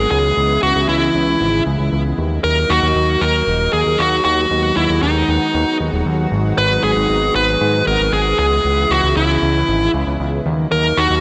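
Synthwave with a nostalgic, uplifting mood, where a dark, overdriven electric lead guitar carries the melody up front through digital delay, over a lush, warbling pad of detuned sawtooth and square-wave unison chords with slow attack and chorus, a fat, thick analog bass, and moderate hall reverb, all in a bright 1980s-style digital production that cycles through C#m7, D#m, B6/D#, and G#m7 in this short cut from a longer piece.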